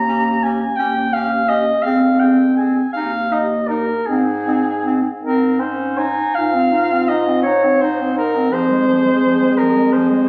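A dark, vintage-toned soprano saxophone with light vibrato carries the melody up front in this elegiac, melancholic excerpt of a lyrical classical piece for single-reed quartet, moving in a rubato 6/8 at about 52-57 BPM in Ab major. A clear, present bass clarinet anchors the bass alongside it, while a bright clarinet supplies accompaniment and a mellow, punchy alto saxophone with a smooth top sings a second line in the background. Harmonies drift through Eb7, Fm and Ab inside a recital hall reverb, captured on a phone in the room with a compressed, club-like ambience.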